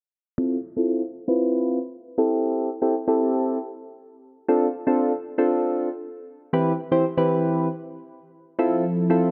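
Soft, round electric-piano-like synth keys with chorus and a filter sweep open this energetic yet bittersweet pop excerpt, moving through Fmaj7, Am7, Dm7 and Cmaj7/E chords in a lush hall reverb before a smooth, detuned analog pad joins with sustained chords at 8.6 seconds, just as the harmony returns to Fmaj7.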